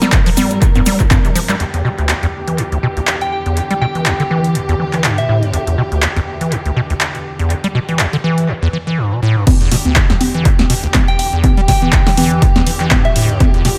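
Acid house at 122 BPM in E phrygian, gritty and driving with a 16th-note swing, built on a squelchy, resonant square-wave acid bass riff with dub echo, an overdriven analog drum machine of congas, crash, handclaps, hi-hat and dry snare through analog delay, a smooth bowed string section holding sustained chords under sidechain pumping and a low-pass filter, a grainy cabasa in the background until 1.6 s, an up-front electronic kick that drops out after 1.2 s and returns at 9.5 s, and a pure FM bell melody with chorus, phaser and echo arriving at 3.2 s, all in an echo-heavy mix lightly touched by reverb and cut from a longer piece.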